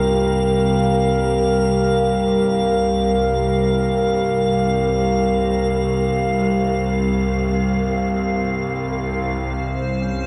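A wet spring reverb and heavy echo soak this dark ambient drone, cut from a longer piece, giving it a vast, ominous air that floats in free time. Up front, a deep, moody analog pad holds sustained chords with a detuned, nasal edge and a sub octave beneath, its chorus and shimmer reverb blooming from a slow attack. A string-like bowed drone sits low and tense, sawtooth-bright with vibrato and a noise layer, while a filter sweep moves across it until 9.4 seconds. High above, an icy, crystalline glass pad adds an airy texture, and a very quiet, eerie FM bell traces warbling, inharmonic arpeggios with a vintage, mellow decay. At 10.0 seconds a dark duduk slips in from the background with a folk-style solo line, its scooped notes and smooth top arriving just as the recording ends.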